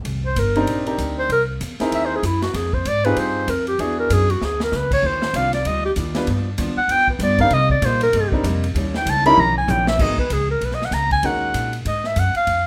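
Lightly reverberant and polished, this brassy, dramatic big band swing excerpt in C minor at 193 BPM features a soft-attack clarinet soloing up front with light vibrato over a woody pizzicato upright bass, a clear, short-sustained baby grand piano and a swinging drum kit with dark cymbals, a punchy kick and a brief fill at 4.4 seconds, while a picked steel-string acoustic guitar with audible finger squeak joins from 5.0 to 9.9 seconds.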